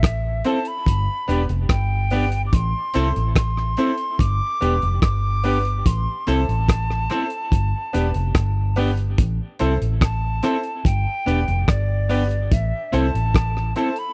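A dry, close 1970s-style studio sound in a small room frames this meditative, hypnotic roots reggae excerpt in A minor at 72 BPM, where a muffled, cloth-damped drum kit with tight kick, hi-hat and rim click and a round, foam-muted fingered electric bass sit up front beneath a hollow concert flute melody with vibrato and dub echo, brilliant grand piano stabs, and a dark, clean electric guitar dressed in lush chorus and dub echo, over a steady alternation between Am and G.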